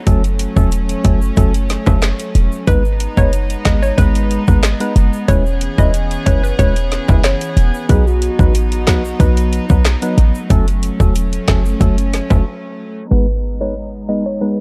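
The short 808-style bass sits up front with a punchy, tight sine tone and fast attack, anchoring this tough, bouncy dancehall excerpt in G# phrygian at 92 BPM in straight 4/4. Beside it the island pop drum kit drives with a tight kick, woody snare, metallic hats, handclaps and rim clicks, overdriven and up front, while a bright, dry egg shaker and timbales sit in the background until both drop out for a break at 12.5 seconds. A hollow, organ-like stab carries the accompaniment with chorus, and a bowed string section holds soft, floating sustained chords underneath, pumping to a sidechain. A mellow, detuned square pluck with chorus and delay takes the melody from 2.7 seconds, handing over briefly to a round, octave-layered synth lead with phaser and vibrato from 7.9 to 10.0 seconds, then returning as a filter sweep closes the final section. The chords move from F#m through G#m, E6 and B, and the dark, filtered production stays almost dry.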